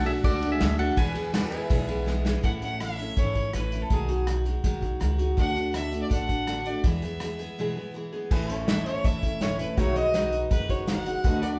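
This honky-tonk and classic country excerpt moves at 164 BPM in a straight 4/4 in A major, with an easygoing, sunny mood. A bright, clean pedal steel guitar carries the opening melody with fingerpicked slide lines and volume swells, while a second, twangy pedal steel holds sustained chords in the background and returns at 8.3 seconds. A full-bodied dreadnought acoustic guitar, picked up front with audible finger squeak, and a woody, thumpy pizzicato upright bass run throughout. An acoustic drum kit played with bundle sticks also sits up front, pairing a punchy kick and medium-tuned snare with dark cymbals, and a short fill at 2.1 seconds leads into a biting, intense fiddle. That fiddle takes the solo from 2.4 seconds onward with light vibrato and a smooth top, and a brief break arrives just before the final section. The band sounds live in one room, with moderate large-studio reverb and a rounded, soft-edged top end.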